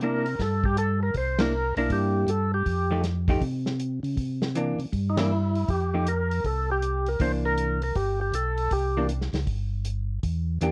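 Worn, warbling cassette tape with drifting pitch and light reverb colors this bluesy, swinging soul jazz organ trio excerpt, where a full, percussive tonewheel organ with key click and slow rotary speaker carries the melody until 9.1 seconds over a dark, clean hollow-body electric guitar comping on C9, F9 and Fadd9 chords, a round, mellow organ bass line, and a dry, smooth drum kit with tight kick and rolled-off top, the band hitting shared accents at 1.3 and 5.1 seconds.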